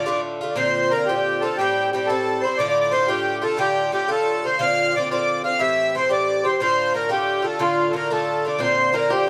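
Celtic folk in the form of a jig, this short cut from a longer piece moves at 120 BPM in 6/8 and D minor, with a driving, dark and lively mood. A reedy, full accordion carries the melody up front, its smooth, rich tone set in plate reverb, while a second accordion with a light tremolo tuning adds a sweet line in the background. An Irish bouzouki provides picked accompaniment up front, its double strings giving a bright, metallic ring. The harmony cycles through Dm, Bbadd9 and C6, and at 8.6 seconds a twangy, percussive bluegrass banjo, played with fingerpicks, slips in behind the others for a brief second line. The sound is close and detailed, with a moderate studio reverb around the whole ensemble.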